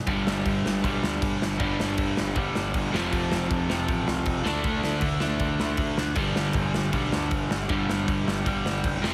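The recording has a heavily compressed, radio-style sound with light reverb, and this short cut from a longer punk rock piece feels energetic and rebellious in a straight 4/4. Two overdriven, picked guitars play the riff from the start. A hollow-body semi-hollow guitar sits up front, while a compressed electric guitar stays in the background. A growling picked electric bass, overdriven and heard both direct and amped, joins beneath them at 0.1 seconds, alongside a big acoustic rock kit that sits up front in a big room with punchy kick, medium-tuned snare and bright crash cymbals. The riff moves through G5, F5 and D5 before returning to G5 at 6.2 seconds, and the full band drives on until the cut ends at 9.1 seconds.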